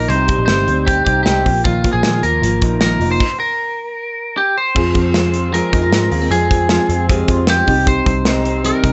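Jangly indie pop at 154 BPM in straight 4/4, breezy and bright, with a compressed, twangy lead guitar up front carrying the melody over a dreadnought acoustic guitar fingerpicked in the background, a slightly broken-up electric guitar through a small old amp playing arpeggios with analog chorus, and a dark, foam-muted vintage bass that is round and punchy. A tight, up-front studio drum kit with crash, hi-hat, kick and a medium-tuned snare drives the band from Cm to Bbsus4 before a stop from 3.2 to 4.8 seconds, after which the second section moves through Fm and back to Cm. At 4.7 seconds a very quiet, reedy electric piano enters, worn and slightly out of tune with a fast tremolo, all set in light reverb in this short cut from a longer piece.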